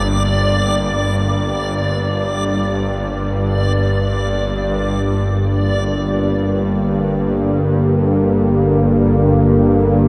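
Unfolding in free time, this dark ambient drone in G minor, tuned to A4 = 439 Hz, sits on a single G minor chord and carries a dark, ominous mood through a short cut from a longer piece. Up front, a bowed-like drone holds the low register from G1 to G2 across the full 10.1 seconds, its string-like, nasal sawtooth tone tense and edged with a noise layer, vibrato and its own reverb. Behind it, a sweeping resonant pad sustains chords between D3 and G4, its detuned sawtooth sound evolving through a filter swell and thickened by chorus. A reversed, swelling texture on D5 adds a dreamy, granular triangle shimmer with its own reverb, ending at 5.0 seconds as the piece moves into its second section. A huge ambient reverb with a 9.3-second decay surrounds the whole, so every slow attack and long release bleeds into a vast, shadowy space.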